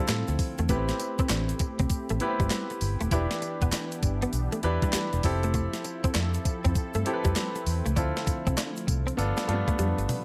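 A swung sixteenth-note groove from a clean 12-bit drum machine, with a thumpy kick, medium-tuned snare, handclaps, hi-hat, tambourine, toms and gated reverb, drives this confident, bouncy new jack swing R&B cut, alongside a grainy egg shaker in the background and a dark, round, foam-muted fingered electric bass. A polished, up-front baby grand piano plays accompaniment, while a direct-recorded clean electric guitar picks a compressed riff through ensemble chorus and a smooth, detuned sawtooth analog pad holds soft chords behind them, moving through Dm7, Am9, Em7, Fmaj7 and G7. The dry mix closes with a drum fill at 9.8 seconds.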